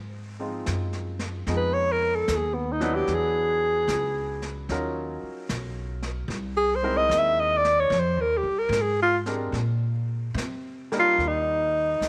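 Intimate and melancholic, this swung jazz ballad fragment opens with a polished, present baby grand piano and a woody, thumpy pizzicato upright bass on gut strings, with a natural-sounding brushed drum kit joining at 0.7 seconds. At 1.6 seconds an up-front alto saxophone takes the solo in a warm subtone, with light vibrato, scooped notes and a slapback echo. The harmony moves through extended chords such as Fm7b5, E9 and C7alt before reaching Ebmaj7, set in a small-room ambience with light reverb.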